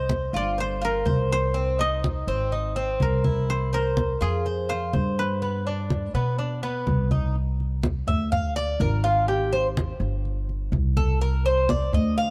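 Sultry and danceable, this Cuban son and guajira piece moves in a straight 4/4 under a dark production with light reverb. A koto carries the melody with fingerpicks, its dry, woody tone placed up front, until it drops out at 7.0 seconds. Alongside it, a Cuban tres picks arpeggios on metallic double strings, some of them octave-doubled. From 7.4 seconds the tres takes a solo over chords that move from Cadd9 through Bb7 and Abmaj7 to Cm9. The pizzicato upright bass sits forward with a steel-strung sound, while low-tuned congas, played close with hard hands, give a thick-skinned, acoustic pulse to a passage cut from a longer piece.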